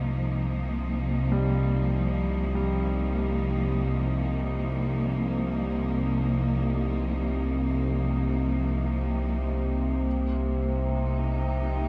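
Bathed in a huge, long-tailed reverb with a shadowy, warm production, this fragment of a longer dark ambient drone piece drifts in free time in C minor, ominous and desolate. Up front, a nasal, evolving analog drone with chorus holds the low register alongside an intimate, bowed chamber cello section sustaining chords with vibrato and a soft attack. Further back, a mellow, vintage grand piano plays arpeggios through tape echo until 10.1 seconds, when the harmony moves from Cm to a rootless Ab69 over C, which holds to the end at 11.9 seconds.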